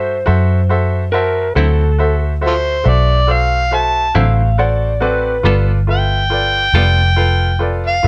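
A gritty, rollicking slow blues in 12/8 opens on a round, punchy, foam-muted electric bass up front, a bright, woody upright piano with short sustain and a slightly broken-up slide guitar over a D9 chord, before a twangy, compressed clean electric guitar with tremolo enters at 1.6 seconds and an amplified, overdriven harmonica takes the jazz-style lead at 2.5 seconds with tongue slaps and scooped notes, moving to G9 at 5.4 seconds under light reverb in this fragment cut from a longer piece.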